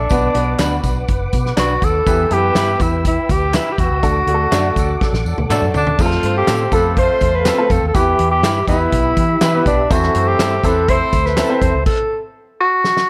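This uptempo, danceable 1960s-style soul piece, cut from a longer piece, opens at 122 BPM in a straight 4/4 with a breathy tenor saxophone playing the melody up front. Its intimate, whispered subtone, vibrato and scooped notes sit over clean tonewheel organ chords in the background, colored by a slow rotary speaker and chorus vibrato. A dark, foam-muted fingered electric bass gives a round, punchy low end. A brilliant upright piano with woody action noise fills in the accompaniment, while a small-room acoustic drum kit with a fat snare and punchy kick drives things along, joined by tambourine, egg shaker and group handclaps. A slightly broken-up electric guitar through a small old amp adds lo-fi stabs with spring reverb, and from 4.8 seconds a mellow, distant horn section plays a tight second line in the background. The band hits an accent and the drums play a fill just before the uplifting move to the second section at 6.0 seconds, and after a stop at 11.9 seconds the saxophone and drums carry on alone, with a final drum fill at 12.8 seconds.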